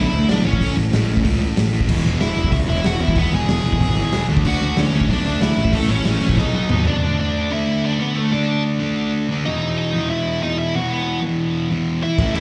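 A sludgy, overdriven guitar sits up front, grinding out a low riff from the first moment of this rowdy, rebellious punk rock excerpt, which is cut from a longer piece and heard as a live gig through a club PA with the room's ambience around it. Above it, a biting overdriven guitar carries the melody in a higher range, trailed by digital delay. A fuzzy, round picked bass and a raw garage drum kit, with a punchy kick, a gritty, saturated sound and a rolled-off top, drive the straight rhythm, and a bright, compressed distorted guitar joins the riff in the background at 1.9 seconds. A drum fill leads into a half-time passage, where the bass and drums drop out at 6.9 seconds and the two riff guitars and the lead carry on over D5 and E5 power chords. The bass and drums return at 12.2 seconds just as the excerpt cuts off.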